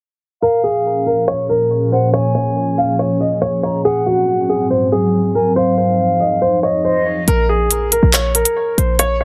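Ominous and dark, this drill hip hop excerpt sits at 140 BPM in a half-time 4/4 feel, in Bb minor. A worn baby grand piano carries the melody up front with long sustain, a low-pass filter and digital delay, while a breathy concert flute with a straight, tongued tone and rolled-off highs plays an unsteady second line through the same delay until about 7.2 seconds. Beneath them, an ethereal, airy pad holds slow-attack chords thickened by ensemble chorus and its own reverb, moving from Bbm7 through Ab7 and Fm7, as a filter sweep runs across the opening section. At 7.3 seconds the harmony lands on Bb7(no3) and the drill drum kit arrives with crisp hi-hats and handclaps, alongside a punchy, tight 808-style bass with a fast attack and decaying sine tone. The mix feels dense and heavily limited, set in a moderate booth ambience.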